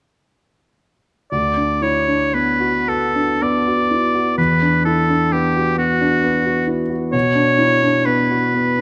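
In a rubato three-time, this pastoral, dreamy impressionist classical duo, cut from a longer piece, sets a clear, smooth-topped oboe melody up front over an intimate concert grand piano accompaniment with deep bass, long sustain and audible action noise, both sounding from 1.3 s to 8.8 s as the harmony moves from D6 to Esus2 to Bm, heard through close, detailed microphones in a moderate scoring-stage reverb.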